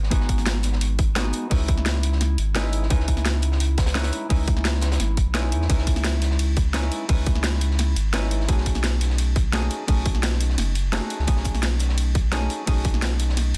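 Liquid drum and bass at 172 BPM in C# minor, this lush, soulful excerpt moves through G#m7, C#m9 and B13 chords. A deep, round sine sub bass sits up front from the start, its fast attack and sustained notes spanning F#1 to E2. An electronic kick drum, tight and overdriven, punches forward alongside a layered drum and bass kit with a cracking snare, bright hats and a ride cymbal, also driven with overdrive. Beneath them, a crunchy acoustic breakbeat kit with a high-tuned snare and rolled-off top stays smooth and dark in the background of a small room. A clean, compressed hollow-body jazz guitar plays fingered accompaniment between G#3 and B4, its dub echo trailing through the dense, heavily limited master.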